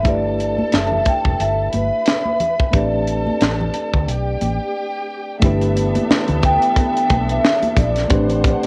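Soft-mallet vibraphone carries the melody with a mellow, ringing tone, its slow motor vibrato and analog delay giving it an airy shimmer over a lush 1970s-style soul groove with a cinematic, bittersweet mood. Beneath it, a muted studio string section bowed con sordino adds a veiled, dark second line, while a reedy electric piano with fast tremolo supplies the accompaniment through its built-in speakers. A tight funk drum kit sits up front with a high-tuned snare and tight kick, joined by a round, foam-muted fingered electric bass and bright, high-tuned congas played with soft hands in the background, all riding a swung sixteenth-note feel. At 5.4 seconds a very quiet percussive tonewheel organ enters with fat sustained chords, key click and a slow rotary speaker, as the harmony keeps alternating between G69 and Am11. The whole short fragment, cut from a longer piece, has the light reverb and small-room intimacy of a home cassette recording, with tape coloring the strings, electric piano and drums.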